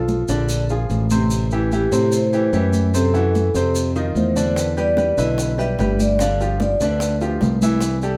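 A growly, punchy fingered electric bass sits up front in this sunny, danceable Afro-Cuban jazz excerpt, joined by a brilliant, woody upright piano that is also prominent in the mix. A ringing, metallic vibraphone played with medium mallets carries the melody over chords moving from Bb9 through Am9, F#m7b5 and Em7 to G7, while close, dry congas with a thick-skinned, high-tuned sound sit in the background alongside grainy, saturated maracas. Round, low-tuned bongos enter very quietly at 4.6 seconds, and the band plays together live in one room with a wet studio reverb.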